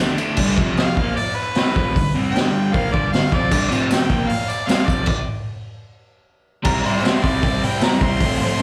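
Garage rock with a raw, rowdy mood at 153 BPM, cut from a longer piece and heard live through a club PA, as a crunchy, double-tracked overdriven guitar riff with slapback echo drives alongside a gritty, punchy garage drum kit with a high-tuned snare, a jingly tambourine tucked in the background surfaces briefly, and a bright, scooped harmonica melody with overdrive and light vibrato enters at 0.8 s, with a stop from 5.1 to 6.7 s before a new section lands on C.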